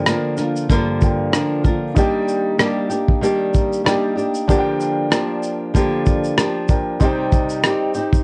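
Acoustic pop in Bb major at 95 BPM with a lightly swung sixteenth feel, this easy-going, carefree excerpt sets a dark, fingerpicked flamenco guitar up front over a cloth-damped, thuddy drum kit of muffled kick, rim click and shaker that enters at 0.1 seconds, while a warm concert grand piano with audible action noise and long sustain sits lower in the mix in plate reverb, the chords moving from Gm7 through Ebmaj7 and Bb6/D to Cm, all wrapped in light reverb and the warbling pitch drift of worn cassette tape.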